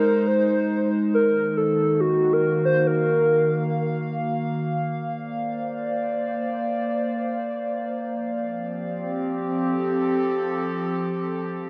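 This short cut from a longer IDM piece drifts in free time, its glitchy, melancholic mood carried by just two synth voices in a plate reverb with a 2.5 second tail. A warbly, nostalgic lead sings the melody from the opening, its detuned square and sawtooth tones given chorus, vibrato and tape echo, and it falls away at 4.2 seconds. Beneath it, a dark, lo-fi pad sustains chords through the whole 11.7 seconds, blending square and triangle waves with ring modulation, a slow attack and long release, plus its own chorus and built-in reverb. The harmony moves from Abadd9 to Ebm, then shifts at 4.6 seconds to Bbadd9 and finally F. With both parts up front, the wobbling character of the sound and the lead's vintage tone give the fragment a faded, memory-like quality.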